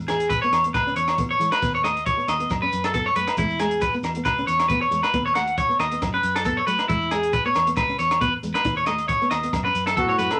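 Sunny and carefree, this highlife guitar band excerpt rides a gentle swing, with a twangy, slightly broken-up electric guitar up front spinning arpeggios over a thumb-plucked nylon-string guitar, a round fingered electric bass, and a compact cocktail drum kit with a punchy kick, while grainy shekere and ringing agogo bells sit in the background of a wet studio ambience, until a veiled, bucket-muted trumpet with scooped notes and a breathy, whispered muted trombone enter at 10.0 seconds as the passage is cut off.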